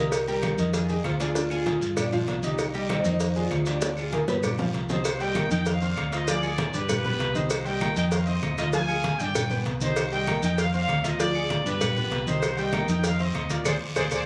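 A fiery, passionate salsa fragment in C minor at 195 BPM opens with a bright, plectrum-plucked oud melody over brilliant grand piano chords and a dark, round hollow-body electric bass, while close, hard-hit cowbell and bongos lead a percussion bed of soft-handed congas, woody claves and raspy guiro set in the background, joined by grainy maracas; during a drum fill the oud gives way at 4.9 seconds to a mellow, punchy, up-front trumpet section with light vibrato, and the band, captured on a phone in a reverberant club, closes on a band accent at 13.7 seconds.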